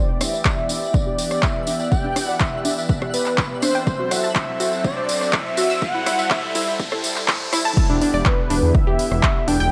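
Progressive house at 123 BPM in E minor, this driving, expansive passage is cut from a longer piece and spends most of its length in a build-up over Em7, F#dim and Am7 chords. A bold, thick sawtooth unison lead carries the melody with dub echo, while a lush, nasal pad holds sustained chords with chorus and sidechain pumping. A round analog pluck spins arpeggios through a filter sweep, colored by chorus, tape echo and pumping, and a twinkling granular texture with an octave-up shimmer sits in the background. Punchy, overdriven kick drum sits up front, joined by a layered deep house kit of crash, handclaps, hi-hat and rim click plus a jingly vintage tambourine, as a background riser climbs from 2.6 s. At the drop at 7.8 s the tambourine falls away and a dark, rumbling detuned saw bass enters at 7.9 s, all set in a moderate lush hall reverb.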